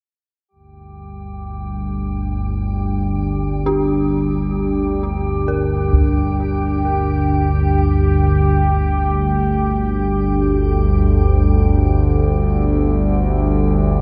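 An analog drone sits up front in the low register, its sawtooth and pulse-wave tone slowly evolving under chorus and phaser to anchor this unsettling, ominous dark ambient piece in G minor. Above it, a deep, moody pad holds sustained G minor chords, its detuned unison layers, sub octave and ring-modulated grit softened by chorus and shimmer reverb. A faint metallic, inharmonic FM drone hovers higher on a single G, lending an eerie sheen. From 3.7 seconds a dark, detuned synth bell adds mellow, decaying arpeggios trailed by delay and shimmer reverb, and a taiko ensemble struck with hard sticks sounds briefly through a low-pass filter between 5.9 and 6.1 seconds. The music floats in free time within a huge ambient reverb, and a cassette-tape coloring gives this short cut from a longer piece a worn, shadowy character.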